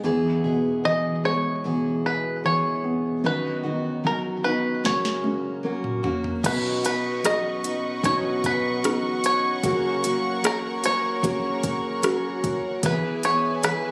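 A heartfelt, tender pop ballad in B major at 75 BPM, where a soft, felt-muted upright piano with audible action noise and a full-bodied, picked steel-string acoustic guitar playing arpeggios open the piece, joined at 0.9 s by a twangy, fingerpicked bluegrass banjo carrying the melody up front. An overdriven, produced R&B drum kit with a soft kick, sharp snare and crisp hats arrives with a fill at 4.9 s, and at 6.4 s a dark studio string section with light vibrato and a soft attack adds sustained chords as the harmony moves from Badd9 to F# and E. The sound carries a moderate plate reverb and the compressed feel of a phone recording in the room, and the clip is cut from a longer piece.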